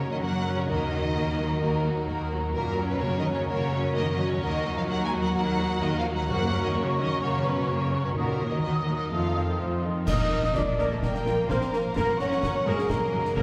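A straight 4/4 pulse drives this triumphant, adventurous excerpt of heroic adventure film score, cut from a longer piece. A lush symphonic violin section carries the expressive, vibrato-rich melody, supported by rich, smooth cellos and double basses below and a distant viola section in the background, while a very quiet chamber violin section, a dark cor anglais, a dark clarinet and a mellow, hollow silver flute weave second lines around it. A very quiet concert harp rings out fingerpicked arpeggios throughout, and a roomy French horn section enters at 0.7 seconds with sustained chords set back in the hall. Round, soft-mallet timpani sound briefly at 6.3 seconds, and at 10.1 seconds the music turns to a new section with a full band accent, as close snare drum, bass drum and dark cymbals arrive alongside a burst of bright clash cymbals. The whole orchestra sits in a wet concert hall reverb, heard from further back in the room.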